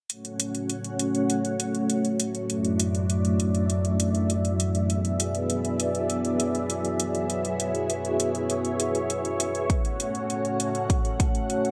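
Synthwave with a cinematic, moody air, built on a lush string machine whose sawtooth ensemble chords swell in slowly over a sub octave, shimmering with ensemble chorus, sidechain pumping and a filter sweep across the whole excerpt as the harmony moves from F#m through Dadd9/F#, E7/F# and C#m7/F# back to F#m. Metallic electronic hi-hats tick along up front from the start, and a punchy, layered electronic kick drum arrives only at 9.7 seconds. A wet plate reverb and bright 1980s-style digital production frame this fragment cut from a longer piece.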